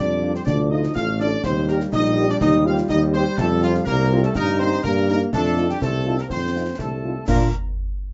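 A proud, spirited military-style march for wind band in a straight 2/4 at 123 BPM opens with a dark, distant trumpet section on the melody, a pure, bright flute group and a warm euphonium with light vibrato on second lines in the background, smooth trombone chords and a mellow tuba bass up front, as a soft-attack French horn section joins at 0.2 s and close, dry snare, bass drum and dark clash cymbals enter at 0.3 s, all in a moderate studio reverb over a chord progression landing on Bb at 7.3 s.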